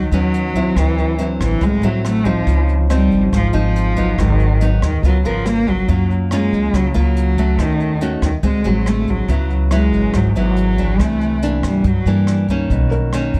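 A bowed cello carries the melody up front, its expressive line shaded with vibrato and portamento in a low register, in this melancholic, smooth bossa nova excerpt at 141 BPM in a straight 4/4. Beside it, a fingerpicked nylon-string guitar plays classical-style accompaniment, also up front, moving through jazzy harmony that opens on a rootless G#m7 and passes through chords such as D9, C#maj9, D7#11 and C9 before settling on Bmaj9. An upright bass played pizzicato gives a woody, thumpy bottom with steel-string bite. A brushed jazz kit in a small room adds hi-hat, rim click and a boomy kick, sitting lower in the mix. At 12.9 seconds a baby grand piano enters briefly on a single high note, intimate and natural with audible action noise and short sustain. Light reverb frames a dark, warm production.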